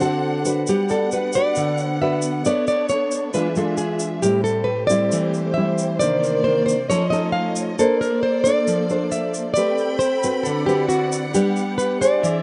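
Sunny and relaxed, this bossa nova in G major moves at a straight 135 BPM in 4/4, tuned slightly sharp to A4 = 444 Hz, and is cut from a longer piece. Two classical nylon-string guitars sit up front: one fingerpicks the accompaniment across the low and middle range, while the other, thumb-plucked, carries the melody from 0.7 seconds. Behind them, a lush symphonic string section holds bowed chords with soft attacks and expressive vibrato, and a grainy, mellow tube shaker keeps time from a small-room distance. A very quiet, intimate concert grand piano adds brief accompaniment, appearing at 0.9 and again at 6.0 seconds, with its action noise audible and a deep bass character. The harmony drifts through rich extended chords, from Gmaj7 through Cm9, Faug7 and Bbmaj9 before settling back on Gmaj7. Captured outdoors with light reverb and free of room sound, the recording has a soft top end that rolls off above 10.3 kHz.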